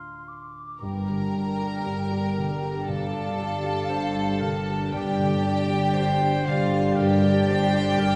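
A floating symphonic violin section carries the longing melody in this slow, rubato cinematic passage in G minor at 59 BPM, alongside an airy, hollow flute heard from the start. A rich second violin line joins from 0.8 s and a bright solo clarinet from 2.9 s, while a distant oboe sounds only briefly at the start. A dark baby grand piano, mellow French horns, a ringing harp, very quiet violas, and bowed cellos and double basses fill out the moving accompaniment, heard from further back in a wet concert hall.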